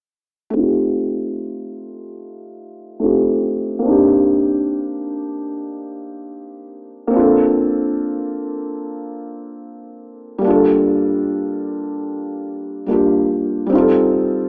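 A lazy 4/4 groove with a swing on the sixteenths gives this hip hop excerpt its unhurried, nodding feel. The only part is a felt-muted upright piano playing accompaniment from 0.5 to 14.5 seconds, sitting in a modest register and placed up front. Its tone is soft, dark and intimate, with thick felt dulling the hammers and the action noise clearly audible. A cassette-tape color and a low-pass filter shade the piano, and a filter sweep runs across it through most of the passage, while a lush hall reverb wraps it in a long tail. The chords move from F9 through Cm7, Bbmaj7 and Gm9 before returning to F9, setting a nostalgic, melancholic mood. The mix has the rough, small-speaker character of a home demo, as if this fragment were lifted from a longer piece.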